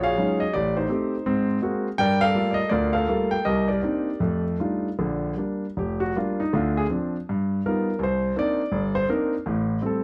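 Swung eighth notes stretch and relax under a rubato touch in this relaxed solo jazz passage, cut from a longer piece, for a warm concert grand piano alone. The piano sits up front with deep bass, long sustain and audible action noise, moving through rich extended harmonies like Ebm11, Gm9 and F13 before reaching Bb6 at 5.0 seconds, where a second section brings a solo turn through Dm7, G7alt and Cm9. Close, detailed microphones and light reverb give the natural, intimate sound a sense of sitting beside the instrument.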